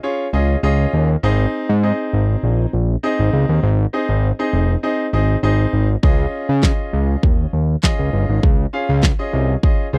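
Dance-pop with an upbeat, summery lift, this dry, close excerpt opens on a clear, vintage-toned grand piano and a fat, nasal, saturated sawtooth bass, both pumping with sidechain, while the chords move from Dbadd9 to Ab; a punchy, layered electronic kit with handclaps and a fat snare arrives at 6.0 seconds as the harmony returns to Dbadd9.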